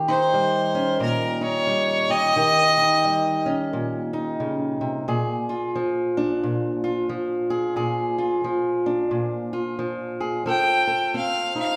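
Acoustic country blues with a swaggering, gritty mood, moving at 89 BPM in 4/4 with a swung eighth-note feel and tuned slightly sharp of standard pitch. A dark, boxy fingerpicked ladder-braced acoustic guitar carries the accompaniment throughout through Eb7, Bb7 and F7 chords, while a single bowed fiddle, nasal and earthy, plays the melody from 0.1 to 3.5 seconds and returns at 10.5 seconds. Both instruments sit up front in a reverberant recital hall, though the fiddle keeps a somewhat distant character in this brief excerpt cut from a longer piece.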